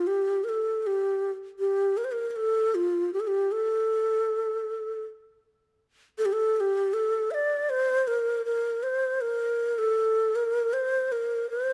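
Set in a straight, unhurried 4/4, this short excerpt of Arabic maqam ensemble music has a hypnotic, melancholic mood. A single low ney carries it as a solo from the first moment to the last at 11.7 seconds, moving between F4 and E5. The end-blown reed cane has a breathy, warm voice with gentle vibrato and tongued articulation, and it sits up front in the sound. The phrase shifts into a new section at 6.2 seconds. A light reverb gives the space a soft halo, and the tuning rests slightly under standard pitch at A4 = 439 Hz.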